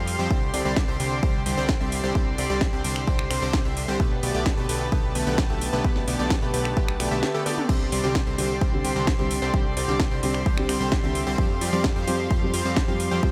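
Lightly reverberant and euphoric, this festival progressive house excerpt pumps a punchy, detuned supersaw stab riff with tape echo over a fat analog bass, a tape-warm up-front kick, a house kit of cracking snare and metallic hats, and floating sul tasto chamber strings, before a drum fill at 7.5 seconds ushers in a muted, boxy upright piano with audible action noise at 7.7 seconds.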